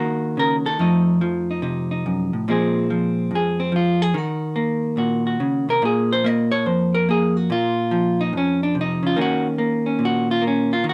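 Swung eighths in 4/4 drive this moody, swinging solo jazz fragment, cut from a longer piece, where a lone vintage hollow-body electric jazz guitar, picked, dark and clean, sits up front under close, detailed microphones and light reverb, moving from Ebm7 and F7b9 into a solo from 2.5 s over Bbsus2, Ebm7 and Bbmadd9 chords that ranges from F2 to Eb5.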